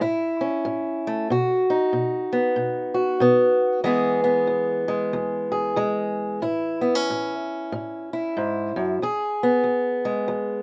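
Gritty and rollicking, this short blues excerpt in E major moves at 93 BPM in 4/4 with a swung eighth-note feel. A lone fingerpicked acoustic archtop guitar plays the whole 10.6 seconds, its boxy tone sitting up front in light reverb as it ranges from E2 to G#4. The chords move from A to B, then settle on E at 3.9 seconds before returning to A and closing on E.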